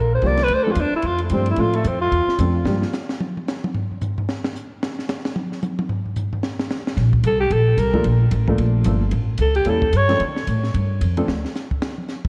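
Small-group swing and bop jazz in D minor, this moody, cool fragment of a longer piece moves at a brisk 223 BPM in 4/4 with a swung eighth-note feel. A growling alto saxophone carries the melody as a solo, raspy and breathy yet set distant in a diffuse ambient delay, while a woody, thumpy pizzicato upright bass sits up front beneath it. A dark baby grand piano adds mellow, intimate accompaniment with short sustain, audible action noise and a subtle chorus. A compact cocktail drum kit with a high-tuned snare and punchy kick plays throughout, taking solo space from 2.7 to 7.0 seconds while the other parts drop out, before saxophone, bass and piano return over chords moving from Bbmaj7 through A7b9 to Dm. The whole mix is dreamy and soaked in church-like reverb, with a cassette-tape character.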